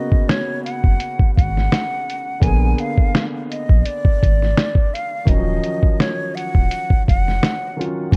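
Lo-fi hip hop with a nostalgic, melancholic mood and a swung feel, where a breathy, hollow concert flute with vibrato carries the melody through tape echo over woody upright piano colored by cassette tape, muffled, thumpy sampler-style drums sit up front, and a deep, round dub sub bass enters at 0.8 seconds, in a dark, dry production.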